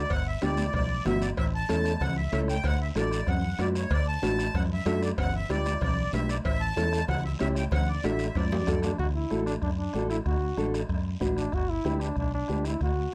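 Sunny and danceable, this cumbia fragment from a longer piece moves with a straight, brisk four-beat pulse over a cycling chord progression. A sweet, reedy accordion with a light tremolo tuning carries the airy melody from the start, while an up-front fingered electric bass and a full-bodied, thumb-plucked nylon-string guitar, finger squeak audible, fill in beneath it. The percussion spreads out in layers: a soft-beatered bombo and high-tuned congas sound distant in a large room, a raspy guiro sits close and dry, and a vintage, band-limited cowbell and timbales ring in the background. After a drum fill at 8.4 seconds, the accordion drops out and a bright trombone steps forward at 8.8 seconds for a punchy, smooth-topped pop-style solo with light vibrato. Light reverb and close, detailed miking keep the sound clear through to the cut at 13.1 seconds.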